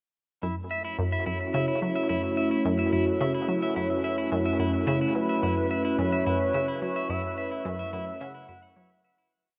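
A steady, straight 4/4 pulse drives this short, complete piece of ambient, sequencer-driven space music, carried by a round, detuned analog pluck whose six-step bass riff drifts against the bar while a clean, picked electric guitar loops a three-step arpeggio that drifts on its own cycle. Alongside them, a swirling, evolving sawtooth pad holds sustained chords up front, treated with phaser and chorus, and the harmony rests on a single minor-seventh chord. A very quiet, resonant texture bubbles through random filter steps on one held high note. At 5.2 seconds an expressive, dark synth lead enters with vibrato, a moving notch and lush chorus, shaping short call phrases from a brief motif. The mood is hypnotic and mysterious, the mix dreamy and cassette-tinged, soaked in a huge reverb with tape echo on the pluck, guitar and lead, and a fade-out begins at 6.4 seconds.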